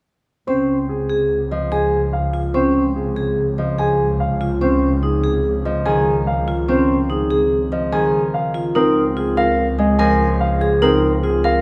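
A metallic, up-front vibraphone struck with hard mallets and its motor off spins arpeggios through this bright, propulsive minimalist pattern music, cut from a longer piece and moving at 145 BPM in a straight 5/4 in D-flat major. A dark, mellow concert grand carries the melody with long sustain, a fingerpicked acoustic Celtic harp rings beneath as accompaniment, and a rich, focused bowed double bass section holds a low Db with vibrato. All four play from 0.5 to 11.6 seconds inside a moderate scoring-stage reverb, the harmony shifting from Dbmaj7 to Fm7/Db at 8.8 seconds.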